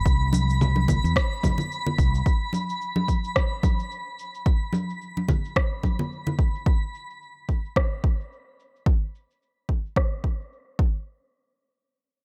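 A twinkling granular texture opens this short cut from a longer sunset chillout piece, sitting high and faint with an octave-up shimmer, a slow attack and a long, sparkling release in its own reverb. Almost at once a punchy electronic kick and a layered kit of electronic shaker, congas and rim click arrive up front, the latter softened by low-pass filtering and carrying a gentle swing. A mellow fretless electric bass adds a dark, round line in its low register, but it stops at 2.2 seconds, after which the harmony drops away. Separate acoustic congas, close and dry with a ringing, medium-tuned tone struck by hard hands, play until 6.4 seconds, while the granular texture ends at 6.7 seconds. A filter sweep runs across the drums for the whole passage, and light reverb keeps the relaxed, sunny mood airy.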